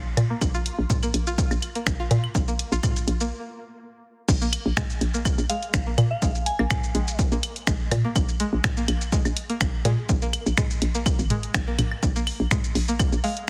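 A 124 BPM minimal techno groove in 4/4 with a light 16th-note swing runs through this clinical, hypnotic excerpt, built on a dry, up-front electronic kick, a punchy analog drum machine of crash, finger snaps, hi-hat and shaker, and overdriven electronic toms, woodblock and claves, all under a heavily compressed, radio-like digital ambience. A hollow, knocking FM bass and a twangy, string-like resonator pluck with chorus, phaser and dub echo both pump against the kick, and after a short break the drop lands at 4.3 seconds. A soft, pure synth bell melody with its own chorus and dub echo surfaces briefly at 5.5 seconds and again just before the close.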